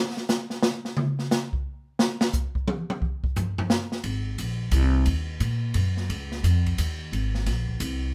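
An open jazz drum kit opens this short excerpt from a longer jazz piano trio piece, playing alone from 0.2 seconds with hi-hat, kick drum, ride cymbal, snare drum and toms. The kit sounds airy and polished in a small room, with dark cymbals, a medium-tuned snare and a boomy kick placed up front. At 4.0 seconds a pizzicato upright bass joins, woody and thumpy with steel strings, sitting up front in a low register from Ab1 to Bb2. The tune moves at 176 BPM in 3/4 with a swung eighth-note feel, set in Ab mixolydian. The mood is relaxed and warm, framed by a moderate studio reverb.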